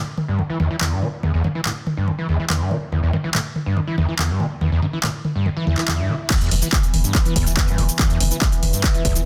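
A dense, heavily limited modern master with a moderate stone-room ambience carries this hypnotic, relentless slice of driving peak-time techno, cut from a longer piece. A squelchy, screaming sawtooth acid line with distortion, chorus and tape echo opens the track under a filter sweep, joined by an overdriven, up-front drum kit of crash, handclaps, hi-hat, shaker and toms pumping with sidechain, while a brief electronic swell leads into the drop at 6.3 seconds. There a heavy, overdriven electronic kick lands with a round, deep sine sub bass and a slow-blooming drone of moving, resonant overtones bathed in chorus and its own reverb.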